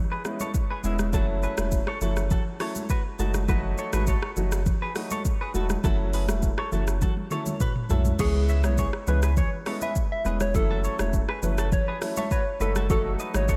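A round, deep sub bass sits up front in this mellow, smooth afrobeats passage, joined by a tape-warm electronic kit with metallic hats and a drum fill at 7.0 seconds, soft-handed congas in the background, a polished grand piano, and a bright, twangy clean electric guitar riff bathed in lush chorus and diffuse delay, before a gentle, warbling FM synth lead enters at 8.2 seconds to carry the melody.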